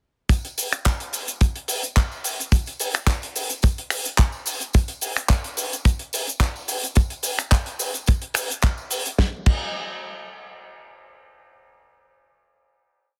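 A dense, heavily limited modern master in a small room ambience frames this short nu-disco piece, a percussion-only track at 108 BPM in 4/4 with a light 16th-note swing and a cosmic, sensual mood. A dry, tight acoustic kick sits up front with a rolled-off top, driving a four-on-the-floor pulse as the loudest part. Around it, a damped 70s drum kit plays a disco backbeat with dark cymbals, a medium-tuned snare carrying soft clipping, closed and open hi-hat, cabasa, finger snaps, handclaps and crash cymbal. A very quiet tambourine, set in a live room, adds disco percussion alongside the kit from 0.3 seconds until 9.2 seconds. The groove runs as a single drop before a final hit closes the piece at 9.2 seconds, with the kit and kick ringing out to 9.6 seconds.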